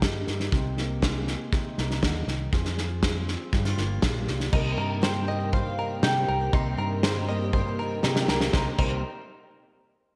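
Bittersweet and stirring, this indie folk passage in C minor moves at 120 BPM in a straight 4/4, cut from a longer piece and building as it goes. A full-bodied fingerpicked steel-string acoustic guitar with a slapback echo opens alongside a dark, round fingered electric bass and a loose, up-front indie drum kit with a punchy kick and medium-tuned snare, moving through Cm7, Abadd9/C, Fm and Gm7. At 4.5 seconds the arrangement swells in number of parts: a mandolin carries the melody with slapback echo and analog delay, a shimmering, octave-doubled twelve-string guitar with ensemble chorus adds picked accompaniment and finger squeak, a twangy, percussive banjo spins arpeggios, and a very quiet, flute-like tonewheel organ holds soft sustained chords through a slow rotary speaker. A drum fill at 8.0 seconds leads into a brief closing section. The whole sits in a lush hall reverb that gives it a big arena sound.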